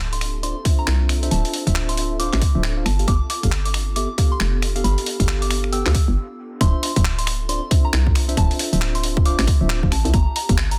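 A hollow, knocking FM bass sits up front in this late-night, bouncy two-step UK garage cut, joined by a tight, layered electronic kick and a gritty, compressed sampler-style kit of finger snaps, handclaps and hi-hat, all carrying a swung groove. Above them, a mellow tine electric piano plays stabs through dub echo, a soft, pure synth bell carries the melody with chorus and dub echo, and a very quiet, ethereal pad holds sustained chords over a Dm9 to G9 progression. After a break at 6.2 seconds, the drop lands at 6.6 seconds, closing on Gm9 in a dry, dense, heavily limited mix.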